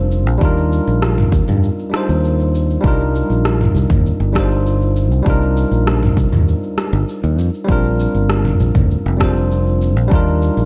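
A steady, straight 4/4 groove at 99 BPM anchors this relaxed, wistful sunset chillout fragment in C minor, where a deep, overdriven electronic kick and an overdriven deep house kit of rim click, shaker and toms, both re-recorded in a large room, sit beneath a growly, punchy fingered electric bass and a clean, up-front tine electric piano with digital delay, moving through Ebmaj9, Cm11 and Bb69 in a dark, lightly reverberant production.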